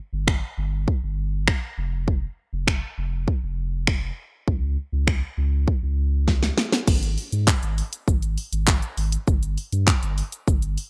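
A round, sine-toned sub bass with sidechain pumping opens this energetic, driving dance-pop excerpt, joined at 0.3 s by an up-front electronic drum kit of punchy kick, fat gated-reverb snare, handclaps, finger snaps, hi-hat, shaker and crash, with a drum fill at 6.3 s leading into a new section at 6.9 s, all in a dry, bright 1980s-style digital production.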